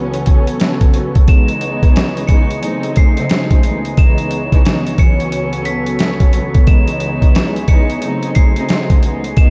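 A dreamy, reverb-soaked mix in a moderate hall sets a reflective, dark mood for this boom-bap hip-hop piece, cut from a longer track and moving at 89 BPM in 4/4 with a 62% swing on the sixteenths in C# minor. A gritty, compressed sampler-style drum kit sits up front, its thumpy kick, medium-tuned snare and hi-hat entering at 0.1 seconds. Beneath it, a studio string section plays bowed, sul tasto accompaniment with vibrato, intimate and close with a smooth top, while a thick, detuned sawtooth unison pad holds sustained chords with a slow attack and long release, thickened by chorus. At 1.3 seconds a bright glockenspiel struck with hard plastic mallets brings in a sparkling, bell-like melody high in its register, ringing through an analog delay. The harmony circles through A69/C#, C#m7 and G#7b9/C#, keeping the mood suspended and brooding.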